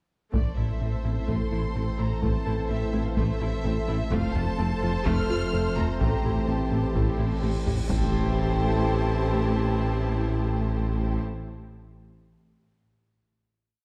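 Opening at 0.3 s with a heavy taiko ostinato, this vast, relentless hybrid orchestral and electronic film score in A minor at 127 BPM sets a lush bowed violin melody and a second violin line over a driving viola ostinato, mellow French horns and trombones holding sustained chords, a warbling lo-fi tape-like pad, a glassy, crystalline wavetable pluck pulsing with chorus, a round analog bass ostinato, and a low end of dark tuba, cello and double bass sections alongside a thick, saturated sub bass drone, until a huge cymbal swell from 7.4 s breaks into a low impact at 7.9 s and the concert-hall reverb carries the final chord.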